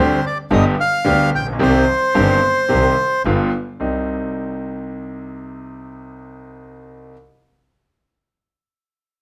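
A short, dramatic tango fragment opens with bandoneon, concert grand piano and double bass sounding together over a Gsus4 chord that settles onto G and then C minor, in C harmonic minor at 110 BPM with a passionate, rubato feel in 4/4. Up front, the dark, reedy bandoneon carries a smooth melody between C5 and G5 until 3.2 seconds. Beneath it, a single bowed double bass with light vibrato adds an earthy, nasal low line that stops at 4.0 seconds. The brilliant, polished piano accompaniment has deep bass and strong presence, and after a G7 returns to C minor it carries on alone until 7.1 seconds. A moderate club reverb gives the trio the feel of an intimate room, and the passage is cut from a longer performance.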